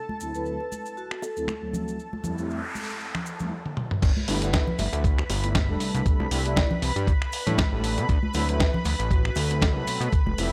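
A lush, warbling unison pad with chorus and sidechain pumping opens this groovy, feel-good nu-disco excerpt at 118 BPM, soon joined by bright congas, maracas and bongos, round synth brass with tape echo, and a mellow vibraphone melody played with soft mallets over D9 and Fmaj9 chords. A dusty, gritty soul drum kit of snare, hi-hat, finger snaps, toms and crash builds through a filter sweep, a noise sweep and a drum fill until the drop at 4.0 s, when a thumpy electronic kick and a fat, saturated analog bass arrive up front. The swung 16th-note groove then rides over G69, C6 and D9 in light reverb, with the sampled drums carrying a large-room character.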